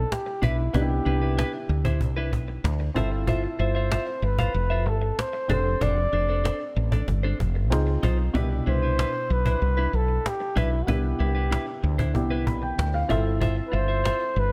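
Polished 1980s jazz-funk pop at 95 BPM in C major, urban and glossy, where a breathy, whispered flugelhorn carries the melody with scooped notes over a round, punchy fretless bass, a dark, mellow baby grand with subtle chorus that adds a fill at 12.1 seconds, a bright, twangy clean guitar riff with subtle chorus, and close, hard-handed cajon, moving through chords from Cmaj9 to G13sus4, F6 and Dbmaj9 in a studio reverb.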